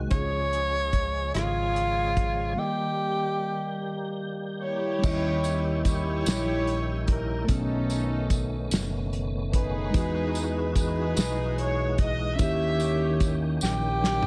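A light, small-room reverb gives this excerpt of slow gospel an intimate, close feel, its mood fervent and solemn at 49 BPM in a straight 6/8. A mellow tine electric piano sits in the background beneath a full tonewheel organ, lightly overdriven and colored by key click, chorus vibrato and a fast rotary speaker, while a round fingered electric bass anchors the low end. A soul drum kit with dark cymbals, a medium-tuned snare, a tight kick and a rolled-off top carries the groove with rim clicks and toms. Up front, a breathy tenor saxophone sings the melody with vibrato and scooped notes in jazz style over C# and D# until 4.2 seconds, its line trailing into a break. At 4.6 seconds a nasal, reedy chamber string section takes over the melody with a bowed gut-string tone through D#7b9, B9 and Emaj9, joined by a jingly, saturated tambourine. The saxophone returns at 13.6 seconds over a closing drum fill.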